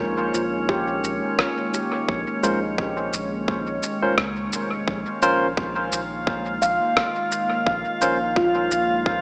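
A swung 86 BPM groove in 4/4 sets this spacious, hazy ambient dub fragment in Bb dorian on a Bbm chord, with a muffled, pitched-down electronic shaker and rim click up front from 0.3 seconds and a tight, overdriven electronic kick drum joining at 0.7 seconds. Beneath them a round, soft dub sub bass sustains, while a deep, moody ambient pad with chorus holds long chords and a glassy, drifting glass-harmonics texture floats alongside. Ringing, meditative handpan arpeggios carry tape echo, and from 2.4 seconds a bright, barky tine electric piano adds stabs through dub echo, all set in a wet echo chamber with a small-speaker character.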